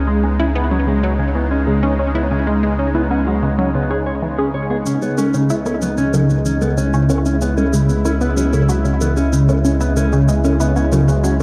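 A dark, warm production set in a moderate concert hall reverb with a 2.5-second decay frames this cosmic, mysterious excerpt of ambient, sequencer-driven space music, moving at 94 BPM in a straight 4/4 and resting on a C#m7 chord in C# minor. A sweeping, resonant pad holds sustained chords throughout, its airy, bright tone built from detuned sawtooth layers with a noise layer, a slow-attack filter swell, a long release and chorus. Over it, a mellow electric guitar plays clean, fingered arpeggios through tape echo and stands as the most prominent part. A deep, round sine sub bass sits up front on a low C#, while from 0.1 s a tight, driving sequenced synth repeats an evolving riff with a fast-attack filter pluck, colored by chorus and tape echo. At 4.9 s, cabasa and bongos with an electronic, analog, tape-warm character enter quietly in the background, re-recorded in a large room and carried on tape echo.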